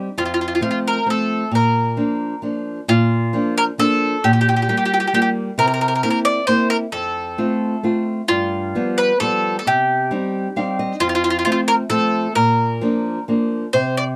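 A dark, warm production with light reverb frames this sunny, lively Italian folk serenade in Bb major, a short passage cut from a longer piece and moving at 133 BPM in a straight 3/4. Up front, a picked bowl-back mandolin carries the melody on its warm double strings, while a small, bright nylon-string guitar with fresh strings fingerpicks the accompaniment from F2 to F5. The chords pass through F, Bb, C7, G7 and Cm, and the guitar adds a brief fill at 10.3 seconds.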